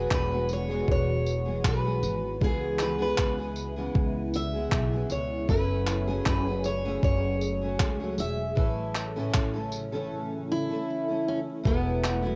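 Acoustic pop with a heartfelt, carefree lilt, this cassette-recorded excerpt sets a picked steel-string guitar melody with tape echo over a double-tracked, full-bodied steel-string guitar accompaniment, a woody, growly upright bass and a gritty, up-front soul sampler-style kit of thumpy kick, handclaps and tambourine, while a shimmering, ethereal pad enters at 0.6 s in the background through Eadd9, C#m7, F#madd9 and A.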